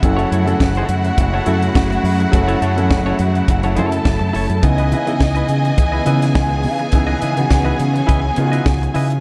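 From the first beat, a dry, up-front funk drum kit with a high-tuned snare and tight kick propels this glamorous, driving disco excerpt at 104 BPM in C# minor, alongside a bright fingered electric bass through an envelope filter, a clean, compressed semi-hollow electric guitar, a baby grand piano in the background, and two bowed string sections (one intimate and sul tasto carrying a second line, the other clear and lush holding sustained chords), as the harmony moves from F#m7 to C#m9 at 4.6 seconds inside a dark, warm studio reverb.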